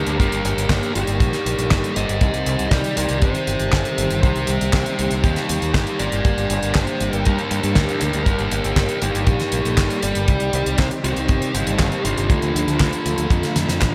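Italo disco with a danceable, nostalgic pull, built on a tight, dry kick sitting up front and a damped 70s kit with a fat snare, hi-hat and handclaps treated with gated reverb, while a growling, overdriven fingered bass churns beneath a dark, high-gain lead guitar melody carrying distortion and delay, a swirling, warbling phased string machine and mellow, brassy synth stabs glow in the background, and a drum fill closes the excerpt at 13.6 seconds, all within a bright 1980s-style digital production.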